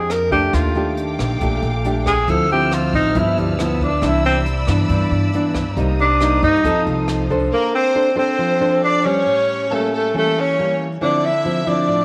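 Bossa nova at 137 BPM, relaxed and sunny, cut from a longer piece: a breathy, whispered tenor saxophone solos up front with subtone, vibrato and scooped notes over thumb-plucked nylon-string guitar with finger squeak, woody pizzicato upright bass, a background brush kit with boomy kick, hi-hat and rim click, and soft-attack sul tasto strings holding sustained chords, until around 7.5 seconds the bass, drums and strings stop and a rich, focused violin section takes up a second line beside the saxophone and guitar, set in a moderate echo-chamber reverb with studio ambience.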